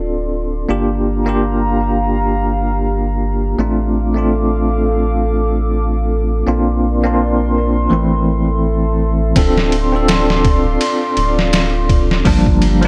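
A light reverb gives this trip hop fragment, cut from a longer piece, a brooding and hypnotic air at 83 BPM in 4/4, swung on the sixteenths and centred on D minor. Up front, a bell-like tine electric piano carries the accompaniment, its clean tone colored by tremolo, tape echo and a touch of vintage 12-bit sampler grit. Beneath it a round, deep analog bass holds the low end with sustained notes, while a warbling, lo-fi tape-like pad lays nostalgic chords higher up, softened by chorus and its own reverb and sitting a little further back. The harmony moves slowly through Dm7, Gm7, F6/A, Bbadd9 and Am before returning to Dm7. At 9.4 seconds a sampler-style drum kit arrives, pitched down and overdriven, with a thumpy kick, a medium-tuned snare, hi-hat and ride in a small room, adding a gritty weight that drives the final seconds to 12.9.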